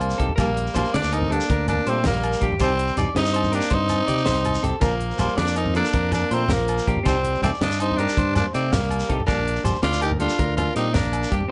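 A raspy, gritty tenor saxophone carries the melody up front in this joyful, danceable highlife excerpt in a straight 12/8, shadowed by a mellow alto saxophone second line with scooped notes and tape echo, over slightly broken-up picked electric guitar arpeggios, a dark, round fingered electric bass, a dry funk drum kit with a high-tuned snare and a fill at 3.9 seconds, background agogo bells, low-tuned congas and a grainy shekere, and a clean hollow-body guitar accompaniment, all set in a light small-room reverb.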